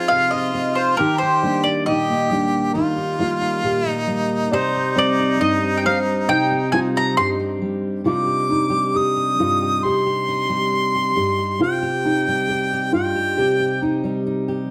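This wistful, melancholic acoustic folk piece opens with fingerpicked steel-string guitar, felt-muted upright piano and clear harmonica together, and a mandolin joins almost at once to carry the melody in a straight 4/4. Picked on doubled strings with a round tone and a touch of plate reverb, the mandolin sits up front and leads the first section before falling silent at 7.3 seconds. From 8.1 seconds the harmonica, which has been playing a second line, takes the solo in a classical style with light vibrato. Meanwhile the bright, full-bodied dreadnought guitar gives fresh-stringed accompaniment, and the piano adds soft, boxy, dark arpeggios with its action noise audible, lending an intimate feel. The harmony moves from Fm7 to Eb and settles on Cm, and a moderate large-studio reverb surrounds the ensemble in this cut from a longer piece.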